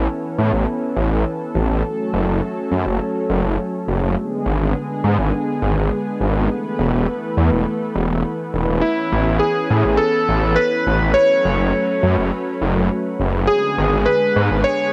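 A straight 4/4 pulse at 103 BPM carries this moody, nocturnal synthwave passage in F# minor, tuned slightly flat to A4 = 436 Hz and cut from a longer piece. A lush, detuned sawtooth pad sustains slow-attack chords through a cassette-tape haze, moving from Aadd9 through F#m, G#dim and Esus4, while a thick, chorused saw bass sits up front beneath it. At 8.8 seconds a clear, vintage electric grand piano with a clangy low end enters on the melody, coloured by tape echo, all set in a small room with a homemade cassette character.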